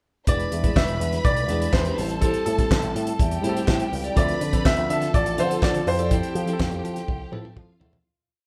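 A dry 70s drum kit with a fat snare sits up front with a four-on-the-floor beat, sixteenth-note hats and a snare layered with handclaps, driving this glamorous 123 BPM disco piece as a punchy picked bass through an envelope filter plays octave lines with slides and chromatic approach notes, a bright grand piano states motif-based call phrases, a clean guitar chops sixteenths in the background, a reedy, slightly out-of-tune electric piano pushes drop2 chords with grace notes, a bowed string section carries long high vibrato lines, and a French horn section adds a lightly vibrato sustained pad from 4.2 seconds, all moving through E7, Am7, Dm7 and Fmaj7 in a large live-sounding room before a fade-out from 6.1 seconds and a closing drum fill.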